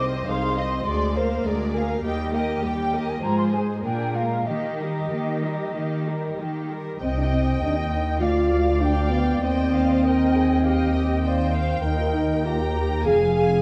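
Rich, bowed violins with vibrato carry the melody of this lively, cheerful classical-period orchestral passage, taken with flexible rubato, as airy flutes and a lush second violin section weave second lines over smooth violas and up-front, clear cellos; when the second section arrives at 7.0 s, a tight, close-miked French horn section adds sustained chords, a solo clarinet joins in the background with its own line, and focused double basses deepen the bass, within a dark, reverberant scoring-stage sound.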